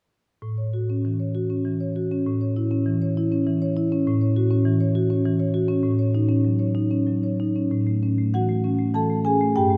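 Rubato and loosely held in 3/4 around 98 BPM, this contemporary classical piece for solo marimba drifts along in A lydian with a warm, playful mood. Played with medium mallets across a range from G2 to A5, the close-miked marimba sounds full, dry and up front, framed by a long church reverb that hangs behind it. The harmony moves from A6 to C#m/A at 2.3 seconds and back to A6 at 4.1 seconds, before a new section begins at 7.7 seconds in this brief cut from a longer work.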